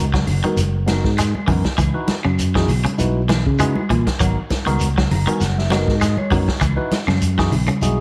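An up-front fingered electric bass drives this funky afrobeat excerpt at 99 BPM in C# dorian with a light 16th-note swing, alongside clean, twangy picked guitar arpeggios, a tine electric piano colored by phaser that plays a fill from 4.8 to 6.6 seconds over G#m9 and C#m11 chords, a vintage acoustic drum kit with a punchy kick and rolled-off top, and background percussion of thick-skinned congas, woody, distant claves and a grainy shekere, all sitting in light reverb and small room ambience.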